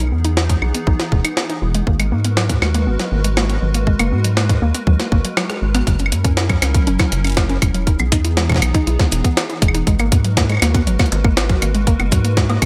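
Eerie and intricate, this 120 BPM IDM excerpt in G# minor sets a hollow, flute-like pad of chorused sustained chords and a warbly, lo-fi pluck spinning detuned arpeggios through chorus and delay over a rubbery, resonant square bass and a gritty, pitched-up jungle sampler kit of hi-hat, rim click, shaker, snare and woodblock treated with gated reverb and digital delay; a tight, up-front electronic kick joins at 0.5 s, and a drum fill and band accent lead into a new passage at 5.9 s, where the harmony moves from G#m9 to F#7, framed by bright 1980s-style digital production and light reverb.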